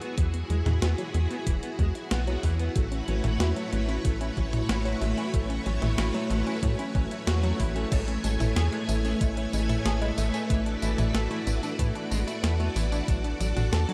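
Nostalgic and uplifting, this synthwave excerpt at 93 BPM in A major sets a lush, sawtooth string machine and a bright, wave-folded analog pluck arpeggio with chorus and delay over a tight, punchy sequencer bass and thumpy electronic kick entering at 0.2 seconds, a tape-warm 12-bit drum machine with crash, hi-hat, snare, tambourine and toms, and a dark, slightly broken-up electric guitar riff in the background, while filter sweeps on the pluck and guitar run until 7.9 seconds and a cathedral reverb soaks the mix in a dreamy haze.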